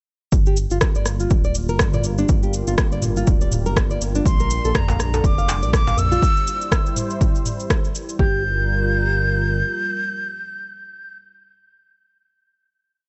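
Afro house at 122 BPM in G dorian with a swung, earthy and hypnotic feel, where a punchy four-on-the-floor kick and a deep house kit of shaker, rim click and toms drive a smooth, detuned sawtooth bass with tube saturation and sidechain pumping beneath a moody, chorused analog pad and a full-bodied nylon-string guitar repeating a 16-step delayed arpeggio over Gm7, Bb6 and C, while a breathy, close-miked silver flute enters at 4.3 seconds with delayed hook phrases, a tight, cracking djembe adds a brief cross rhythm, and the pad and flute ring out on a final Gm7 chord after the drums stop at 8.2 seconds.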